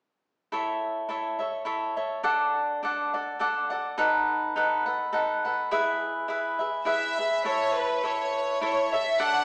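A small-speaker sound set in a wet recital hall reverb frames this short cut from a longer mariachi-style Mexican folk piece, proud and romantic in a lilting triple metre with a gentle swing. A crisp, picked cavaquinho sits up front from 0.5 seconds, picking out the accompaniment through A, D, B7 and E before returning to A. At 6.9 seconds a clear, earthy violin section enters close and bowed with light vibrato, carrying the melody through a tape echo as the passage moves into a new section.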